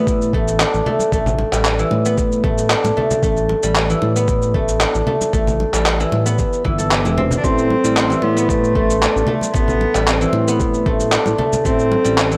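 A lightly swung 114 BPM groove in 4/4 sets this meditative, mystical organic downtempo excerpt in A minor, with a gritty, overdriven sampler-style kick and up-front shaker and handclaps over a mellow, detuned synth bass that pumps with sidechain compression, while soft-handed, saturated congas join at 0.9 seconds. A silvery, fingerpicked guzheng rings out arpeggios on an Am7 chord through tape echo. At 7.4 seconds a single reedy, gut-string cello takes the melody with analog delay, and a pure, slowly beating quartz singing bowl sounds in the background, all within a dry, gritty hardware recording with light reverb.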